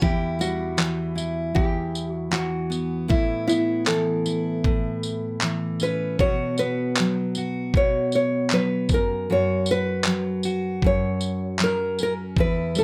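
A gritty, compressed soul-sampler drum kit with a thumpy kick, handclaps and tambourine sits up front beside a fingerpicked dreadnought steel-string guitar with audible finger squeak, while a small-sounding nylon-string guitar carries the melody through plate reverb in this reflective, wistful acoustic pop excerpt at 78 BPM with a light swing, moving from Em through Aadd9 and B5 to F#5 over its 12.8 seconds.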